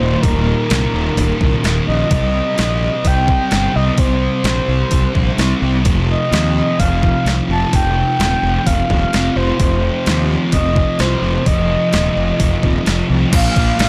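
A straight 4/4 pulse at 128 BPM comes from a detuned 8-bit digital drum machine, overdriven and up front with a thumpy kick, medium-tuned snare, hi-hat and crash, entering at 0.2 seconds beneath a round, dark fuzz fingered electric bass and a thick, double-tracked fuzz guitar riff drenched in lush chorus. Over them floats a breathy, flute-like synth lead with a soft attack and sustained tones, shimmering with chorus, tremolo, vibrato and slapback echo, as the chords move from Eb5 through Cm7 and F5 to Bb5 at 13.3 seconds. The result is a blissful, hazy slice of shoegaze and dream pop rock, cut from a longer piece and set in a light reverb.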